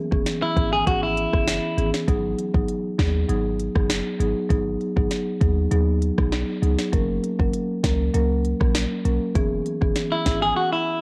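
A lightly reverberant home cassette recording carries this sultry, hypnotic dancehall excerpt in G# minor at 99 BPM, cut from a longer piece, with chords moving from C#m7/E through G#m7 and F#. Up front, a woody rosewood marimba with a tape-worn tone plays the accompaniment over a deep, boomy, sine-like 808-style bass and a produced electronic drum kit with a deep kick, sharp snare, crisp hi-hats and rim clicks. A bright, twangy, compressed electric guitar with the same cassette character picks clean arpeggios from 0.4 to 1.9 seconds and returns at 10.1 seconds, just before the music gives way to silence at 10.6 seconds.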